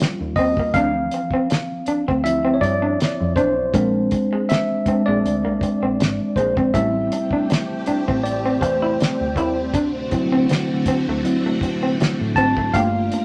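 Soulful and warm, this slow neo-soul R&B excerpt features a worn, lightly overdriven tine electric piano soloing up front over a slightly broken-up, lo-fi electric guitar second line, a cloth-damped drum kit with a fat snare and tight kick, and a deep, foam-muted fingered bass, while a lush sawtooth string machine with ensemble chorus enters at 7.1 seconds to lay sustained chords beneath the gently swung groove in a moderate studio reverb.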